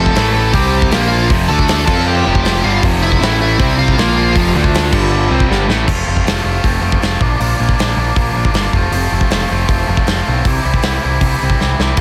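A straight 4/4 pulse at 158 BPM drives this rowdy, rebellious punk rock cut in F major, with a big rock drum kit sitting up front, its tight kick, medium-tuned snare, hi-hat, crash and splash ringing in a big room. Underneath, a growling picked electric bass, overdriven and captured both direct and amped, anchors the low end. Three riffing guitars stack up: a bright, compressed overdriven electric guitar that runs the full length, plus a crunchy guitar and a double-tracked, tight distorted guitar tucked into the background. Over the top, a biting lead guitar carries the melody until 5.5 seconds, when a drum fill ushers the riff guitars behind it out at 5.9 seconds, leaving the bass, drums and one guitar to move through F, Bb and C before another fill at 11.6 seconds. The sound is dry, dense and heavily limited, with a loud modern punch.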